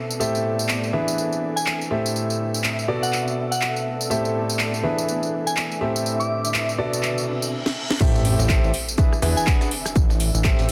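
Energetic and soulful, this piano house clip sets a clear, vintage concert grand riff with dub echo and sidechain pumping over a blurred granular cloud pad, a house kit of cracking snare, handclaps, tambourine and metallic hats, and a soft FM synth bell melody in the background, before a reverse cymbal from 7.3 seconds and a drum fill at 7.6 seconds launch a drop at 8.0 seconds, where a fat, saturated sawtooth bass, a punchy electronic kick and a very quiet, gritty sampler-style kit with shaker join under lush hall reverb.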